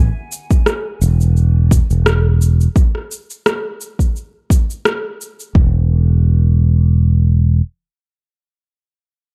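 A lightly swung 86 BPM groove in 4/4 drives this blissful, sunny sunset chillout fragment: an up-front fretless electric bass holds the low end from the start until 7.6 seconds, joined from 0.3 seconds by a layered, overdriven electronic shaker and rim click and from 0.5 seconds by a deep, gritty electronic kick drum, both re-recorded in a large room and sitting up front until about 5.5 and 5.7 seconds respectively, inside a dark, warm studio reverb.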